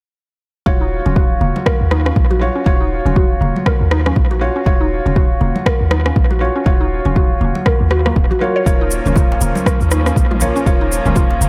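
A hypnotic, earthy afro house excerpt in Eb minor at 120 BPM opens at 0.7 seconds with an up-front, tape-tinged electronic kick, a deep, boomy 808-style bass and soft, muted upright piano stabs with audible action noise, the bass and piano pumping from sidechain and the piano carrying analog delay, while thick-skinned congas sit in the background. Woody, round mallet-like synth arpeggios with chorus, dub echo and a filter sweep follow almost at once, and an overdriven deep house kit with rim clicks and toms joins at 1.7 seconds, all riding a 16th-note swing over Ebm7. At 8.7 seconds the harmony shifts to Bbm/Eb as a rich, bowed chamber string section with light vibrato enters alongside a grainy, close cabasa, with a very quiet djembe slipping in soon after inside an echo-heavy mix with light small-room reverb.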